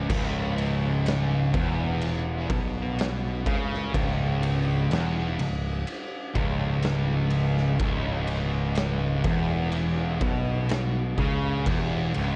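Two thick fuzz guitars, one up front and one in the background, open this brooding, ominous stoner and doom metal fragment on a slow riff in C# minor at 62 BPM, alongside a growly, punchy overdriven picked bass. From 0.1 seconds an oversized, low-tuned acoustic drum kit enters in a big, pumping room, its boomy kick, medium-tuned snare and dark crash and ride cymbals saturated with vintage 12-bit sampler grit and placed up front. The whole stretch sits on a single C# minor chord, and the recording carries light reverb and a cassette-tape character.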